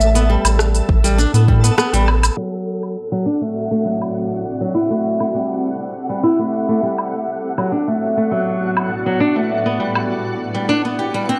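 In a straight 4/4 feel, an organic electronic drum kit with smooth hats, rim click, shaker and woodblock sets a meditative, mystical groove for this organic downtempo excerpt, while a deep, round sub bass sits up front and a tape-warm electronic kick drum briefly joins in, both ahead of a brief break at 1.8 seconds. Up front, a fingerpicked flamenco guitar plays arpeggios through analog delay and carries a filter sweep from 2.4 seconds onward. A dark, slightly broken-up electric slide guitar lingers in the background, a twinkling, sparkling granular texture shimmers above, and from 3.2 seconds a cloudy, blurred granular pad breathes sustained chords with sidechain pumping, all within a dry, gritty recording touched by light digital ambience.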